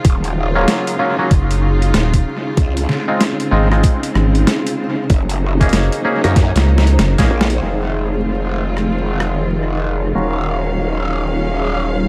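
Light reverb, heavy echo and a bed of vinyl crackle frame this gritty, swaggering glitch hop excerpt, which swings its sixteenths in common time. A knocking, overdriven electronic kick sits up front alongside a compressed, pitched-down boom bap sampler-style kit of hi-hat, rim click and high-tuned snare treated with dub echo, and the kick drops out at 7.3 seconds as a drum fill and band accent carry into the second section. Two basses drive the low end: a growling, wobbling growl bass with chorus and tube saturation runs throughout, while a rubbery, hollow square bass bounces beneath it between 1.3 and 7.3 seconds. A bowed studio string section holds rich, vibrato-laden chords with a vintage 12-bit sampler grit and sidechain pumping, and a cloudy, evolving granular pad drifts in the background through its own reverb. Percussive, stringy stabs from an overdriven clav, pushed through a combo amp, a low-pass filter and dub echo, enter at 0.6 seconds over a progression that moves from Ebm9 through Dbmaj7, Gb6 and Fm7 before returning to Ebm9.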